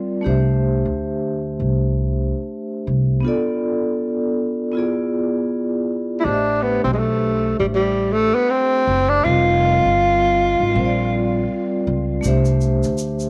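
A breathy, whispered tenor saxophone with subtone, scooped notes and light vibrato carries the melody from 6.2 to 11.9 seconds in this mellow, cool jazz-hop fragment, cut from a longer hip hop piece with a lazy swing. Beneath it, a ringing vibraphone struck with medium hard mallets, its slow motor vibrato softened by cassette tape, moves through chords such as C6/9, Bm7b5, E7b9 and Am11, while a woody, thumpy upright bass on gut strings plucks low and up front. An egg shaker with a vintage, band-limited tone enters at 12.2 seconds, and the whole home cassette recording sits in light studio reverb.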